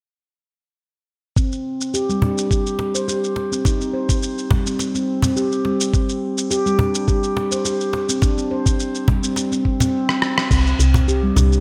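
Mystical and warm, this organic downtempo fragment in C minor moves at 105 BPM with a gentle 16th-note swing, led by ringing, meditative stainless-steel handpan arpeggios played with soft fingertips and shaped by delay and a low-pass filter sweep. A gritty, compressed sampler-style kit of crash, rim click and shaker, bathed in gated reverb, sits beside a thumpy electronic kick and a woody, close cajon struck with hard hands. After a drum fill at 10.1 seconds, a round, dark FM bass with sidechain pumping enters at 10.5 seconds, all framed by a moderate plate reverb and a bright 1980s-style digital sheen.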